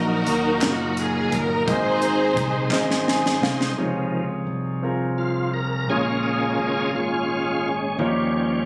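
Slow, hopeful and soulful gospel in 6/8 at 57 BPM in D-flat major, this brief cut opens with a warm, expressive bowed string section carrying the melody with vibrato and portamento over clear grand piano, a shouting, lightly overdriven tonewheel organ with key click and slow rotary speaker, and a punchy, bright fingered electric bass. A crisp, airy fusion drum kit with a high-tuned snare enters at 0.3 seconds, followed by close human handclaps at 0.6 seconds, and drums and piano both play fills before the organ takes a solo from 3.8 seconds to the end. The sound has a moderate studio reverb and a slightly roomy, compressed character, as if captured on a phone in the room.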